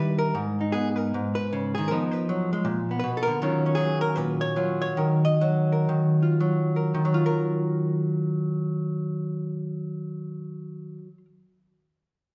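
Smoky and late-night, this short solo jazz passage in Eb minor has a clean, compressed electric hollow-body guitar sitting up front, moving through chords such as Abmadd9, Fm7b5 and Ebm9 with a loose, rubato swing somewhere between 107 and 162 BPM. The playing slows from 3.4 to 7.0 seconds before a new section opens on Ebmadd9. Lush recital-hall reverb surrounds the guitar, giving the fragment the resonant air of a church or concert hall.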